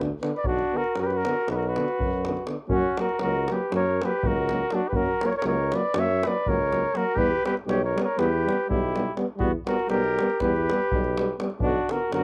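In a straight 9/8 pulse, this fiery, bittersweet Balkan brass band passage rides on a deep, acoustic davul in a live room and a distant, roomy tuba bass, while two warm euphoniums with light vibrato carry the accompaniment, one sitting in the background with a soft attack. From 0.4 seconds a dark, close-miked cornet leads the melody up front in a classical style, and a clear, vintage-toned flugelhorn with a soft attack plays a second line. The cornet, flugelhorn and euphoniums carry a cassette-tape colour, and the home recording on cassette sits in light reverb.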